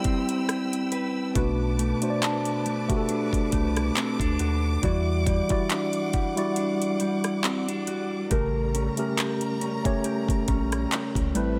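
A late-night, moody contemporary R&B excerpt opens with a mellow tine electric piano up front, a lush bowed string section pumping under sidechain, a dark, clean electric guitar playing arpeggios through vibrato and tape echo, and an electronic drum kit of knocking kick, metallic hi-hat, handclaps and rim click with a light swing. A rubbery, hollow square bass enters at 1.4 seconds, and a very quiet, bell-like celesta, slightly out of tune, joins at 2.2 seconds. The chords move from D13sus4 through Bm7 and Em9 to A7b9 in a dry mix.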